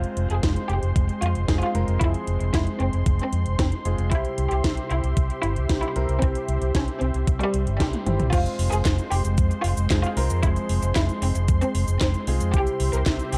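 A bright, amped fingered electric bass with an envelope filter sits up front in this bittersweet, danceable italo disco passage in F harmonic minor at 114 BPM, alongside a layered, overdriven house kit with a cracking snare, metallic hats, cabasa, handclaps, crash and toms, joined at 0.4 seconds by a thumpy, overdriven electronic kick. A clear chamber violin section carries the melody with light vibrato and tape echo over a smooth, detuned sawtooth pad with chorus and boxy grand piano stabs that run through a filter sweep, the harmony moving between Fm and C. A drum fill at 7.9 seconds leads into the second section at 8.3 seconds, all within a dark production touched by light reverb.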